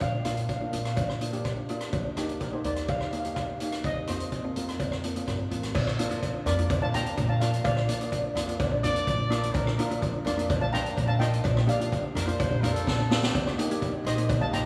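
Carefree and bouncy, this calypso excerpt rides a straight four-beat groove with a lead steel pan singing the melody in a mellow, soft voice while a second, brighter pan fills out the chords beneath it, both close and dry. A woody, dark plucked upright bass and an up-front drum kit with a high-tuned snare and boomy kick drive the music, a cowbell sits distant in the background, and the whole is bathed in the long reverb of a concert hall. At 8.8 seconds a breathy trumpet with jazz-style vibrato enters as a second line, and a drum fill at 12.9 seconds leads into the move to Eb.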